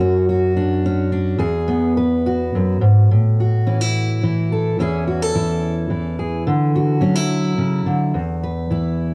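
A fingerpicked steel-string dreadnought guitar, bright and full-bodied, sits up front in this short, gentle folk piece in A major, moving at 107 BPM in a straight 3/4 with a pastoral mood. Its chords open on Dmaj7/F# and Eadd9, then shift at 3.1 seconds into a second section built on A5, E6, Dadd9 and E5. The home cassette recording places the guitar in a wet booth ambience, and the passage is cut from a longer piece, ending at 9.1 seconds.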